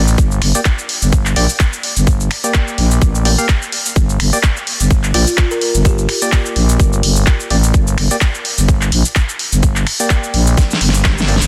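A growling FM bass anchors this gritty, swaggering bass house excerpt, thick and up front, with a fast attack, tube saturation and sidechain pumping that makes its sustained low notes breathe with the beat. A tight, layered electronic kick sits just as far forward, joined by a big-room dance kit built from a huge snare, handclaps, finger snaps, hi-hat and cabasa, all shuffling with a light sixteenth-note swing. Behind them, a mellow, hollow organ stab with a percussive, decaying tone adds chorus, digital delay and its own sidechain pumping. Around 5.1 seconds a buzzing kalimba briefly appears in the background, bright and woody with a ringing thumbnail pluck and a touch of delay. A drum fill begins at 10.6 seconds, and a very quiet electronic swell enters beneath it in the closing moments of this dense, heavily limited modern master.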